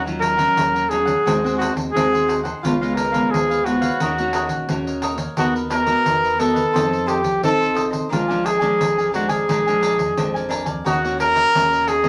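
A straight 4/4 samba and choro groove at 88 BPM in Eb minor sets a bittersweet, lively mood, with a close-miked trumpet up front playing a clear, jazz-style solo with light vibrato over crisp, bright picked cavaquinho, warm fingerpicked classical nylon-string guitar with audible finger squeak, a jingly, compressed and saturated pandeiro, and a deep, smooth sine sub bass sitting dark in the background, heard in a wet club ambience in this brief excerpt of a longer piece.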